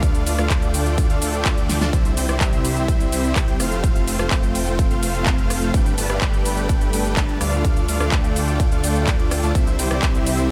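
A huge, compressed supersaw riff with vibrato and tape echo drives this euphoric, uplifting slice of festival progressive house, pumping against a punchy, up-front electronic kick that drops out at 10.1 s. Beneath it, a mellow detuned saw bass with chorus and a warbling, vintage-toned unison pad in the background also pump as they sustain a Dm–C–F–Gadd9 progression. A big-room dance kit with a huge snare, crisp hats, handclaps, ride, rim clicks and shaker fires off a fill at 1.7 s, all set in light reverb.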